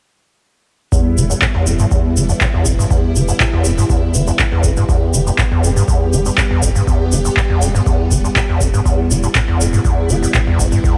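Acid house at 121 BPM in E phrygian, gritty and driving, this excerpt centres on a squelchy, distorted acid bass riff from E2 to D3 that sits up front with a filter sweep and lush chorus, over a deep analog kick drum, electronic handclaps entering at 1.4 seconds, a round sine sub bass on E1 pumping with the sidechain, a grainy tube shaker in a live room, and a vintage sawtooth string machine holding sustained Em chords through phaser and ensemble chorus, with cassette tape colouring on the strings, acid bass, kick and claps and a light reverb giving it a home-recorded feel.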